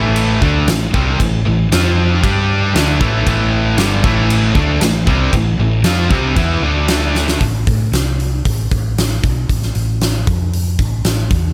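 Up front, a big, natural-sounding acoustic rock kit drives this aggressive, heavy hard rock excerpt at 116 BPM in A minor, with a fat snare, punchy kick and bright cymbals. Three picked electric guitars play the riff: a high-gain, distorted guitar, plus a cranked stack and a double-tracked crunchy guitar, both overdriven, that sit in the background. A round, dark, amped hollow-body bass plays beneath. After a drum fill at 7.2 seconds the guitars stop at 7.4 seconds, leaving bass and drums in a light small-room ambience until the close at 11.5 seconds.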